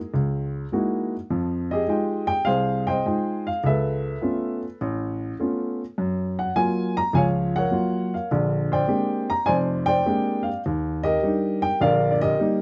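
Playful and swinging, this short passage of solo jazz piano moves at 103 BPM in 4/4 with a strong swing on the eighth notes. A single upright piano carries everything across the full 12.6 seconds, reaching from F1 up to Bb5. Its tone is woody and a little boxy, and the close, detailed miking puts it up front with an intimate feel, and the mechanical noise of the action is clearly audible. The harmony moves through Gb13, Fm9, Db7alt, Gbmaj7 and Bb13 before landing on Ebmaj7 near 10.6 seconds. The room is nearly dry, keeping the focus on the instrument itself in this fragment taken from a longer performance.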